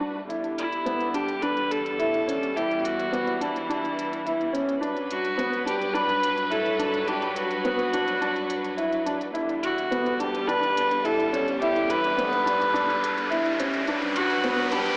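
Piano and strings electronica with a cinematic, moving mood, this excerpt from a longer piece builds steadily throughout, swaying between two seventh chords over a straight 4/4 pulse. Up front, a dark, woody upright piano repeats a mellow, slightly detuned riff with long sustain, coated in lush chorus and diffuse ambient delay. Beneath it, a focused, close string section holds bowed chords with vibrato, while a single viola enters at 0.6 s with an earthy, boxy melody and airy bow, softened by a low-pass filter and its own trailing delay. Clicky, overdriven electronic hi-hats arrive at 0.3 s and stay in the background, sounding re-recorded in a large room. An electronic riser joins at 10.7 s to push the build-up onward, and the whole dreamy mix is soaked in plate reverb with a thin, AM-radio character.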